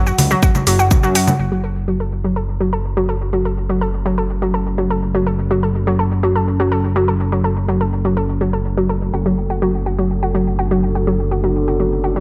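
A bright, round analog pluck spins chorused, delayed arpeggios over a fat, detuned sawtooth bass, both pumping with the sidechain, while a brief up-front burst of punchy, tape-toned electronic kick and layered shaker, hi-hat and congas opens this dark, driving melodic techno excerpt before a deep, moody, warbling pad with vintage 12-bit grit and a filter sweep enters in the background from 3.3 seconds, joined by an evolving pulse-width drone from 3.5 seconds under light reverb.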